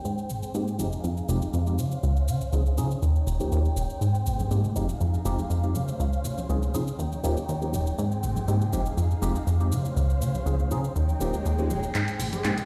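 A plucky, wave-folded analog bass sits up front in this sensual, nostalgic stretch of filtered disco house, its punchy, funky notes dulled by a low-pass filter. Lush bowed violins hold sustained chords with vibrato and portamento, while a worn, slightly out-of-tune tine electric piano, lightly overdriven and phased, fills in the harmony as if heard through built-in speakers. A tape-warm analog drum machine with cabasa, handclaps and hi-hat keeps a straight 4/4 pulse, and bright, distant tambourine and congas join in the background at 4.0 s. A filter sweep runs across most of the clip, an electronic swell and riser arrive at 11.2 s, and a drum fill at 11.9 s leads into a brief glimpse of a clear, tight horn section doubling in octaves just before the cut. The whole piece sounds as if it is played on a big sound system in a bare room, with a large studio reverb.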